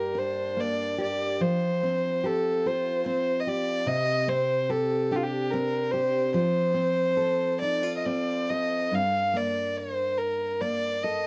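A dark, woody fiddle played by a single player, with light vibrato, carries the mournful, longing melody of this Celtic slow air in a free, rubato 3/4. Up front beside it, a picked steel-string acoustic guitar with audible finger squeaks accompanies through shifting chords, several of them suspended, all captured in a dry, intimate 1970s-style studio sound with light reverb in this brief cut from a longer piece.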